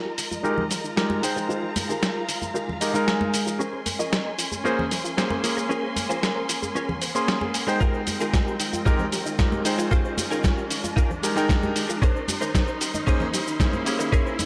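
Moderate digital room reverb surrounds this sleek, sensual nu-disco build-up in F minor at 114 BPM, cut from a longer piece. Filter sweeps run across a picked, direct-recorded electric guitar riff with ensemble chorus and tape echo, a bright, clangy electric grand piano, and a soft, round pluck arpeggio, while dark, lush bowed strings pump in the background over Fm11 and Bbm9 chords. A gritty, dusty soul sampler-style kit of hi-hat, shaker and snare sits up front with hard-handed congas and tube shaker, the guitar adds a fill at 2.5 seconds, an electronic riser enters at 3.7 seconds, and a thumpy electronic kick drum joins at 7.8 seconds.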